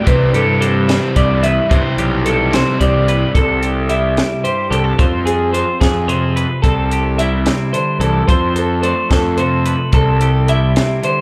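A fuzzed, punchy picked bass sits up front with a dry cocktail drum kit, its high-tuned snare and punchy kick driving this bright, wistful math rock and midwest emo excerpt in 6/8 at 73 BPM in C major. Over them, a compressed, clean twelve-string electric guitar and a slightly broken-up, twangy guitar through a small old amp share spring reverb, the latter adding slapback echo to its high arpeggios, while a double-tracked overdriven guitar plays a slapback riff only until 3.3 s. The chords move from Cmaj9 through C6, Fmadd9 and F6, heard as a live gig through the venue's PA with club reverb.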